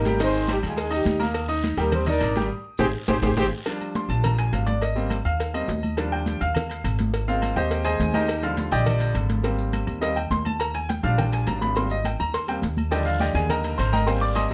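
Moderate studio reverb frames this festive, sunny salsa excerpt, where a brilliant, close-miked horn section in octave doubling carries the melody with light vibrato until 3.5 seconds, and a band accent and drum fill lead into a grand piano solo at 3.7 seconds. The piano sounds bright, intimate and up front, with audible action noise and long sustain, over a woody, thumpy pizzicato upright bass on gut strings. Behind them sit damped, high-tuned congas, a tight cowbell, ringing metal-shelled agogo bells and timbales, grainy, saturated maracas, and a raspy guiro heard at the start and again near the end.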